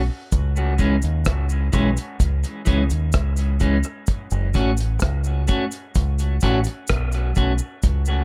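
An echo-heavy mix in a small room frames this meditative, heavy dub reggae passage at 64 BPM, cut from a longer piece and moving from C#m to F#m. The round, dark fingered electric bass sits up front and opens alone at 0.0 seconds, with a dry, rolled-off reggae drum kit of hi-hat, tight kick and rim click joining at 0.3 seconds alongside a close, quiet cabasa. At 0.8 seconds a clean, picked electric guitar enters up front, its warm tone colored by tremolo and dub echo.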